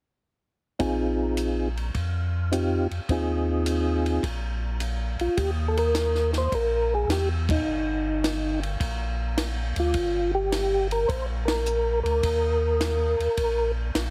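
Soulful and swinging, this soul jazz organ trio, cut from a longer piece, moves at 105 BPM in Eb major with a strong eighth-note swing. A mellow, flute-like percussive tonewheel organ carries the melody with second-harmonic percussion, while a second tonewheel organ supplies a piping, scooped bass line; both sit up front with chorus vibrato and a slow rotary speaker, backed by a compact cocktail kit of hi-hat, ride, high-tuned snare and punchy kick with dark cymbals and a dry, natural tone. The harmony rests on a suspended Bb chord before settling on Eb at 5.4 seconds, the band hits accents at 7.4 and 11.4 seconds, and the mix carries a heavily compressed, radio-like sound with little reverb.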